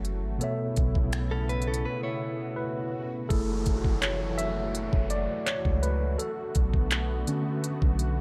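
A worn, slightly out-of-tune tine electric piano sits up front in this late-night contemporary R&B excerpt in F# minor at 83 BPM, taking a solo from 3.3 seconds over F#m9 and Bm7 chords. Beneath it, a detuned sawtooth analog pad warbles with chorus, and a round, dark 808-style bass decays under a smooth drum kit of knocking kick, finger snaps, handclaps and hi-hat. A direct-recorded clean electric guitar plays compressed, picked arpeggios with spring reverb and delay between 1.3 and 3.1 seconds, while an electronic swell and downlifter enter during a break, all wrapped in a digital ambience that deepens the longing mood.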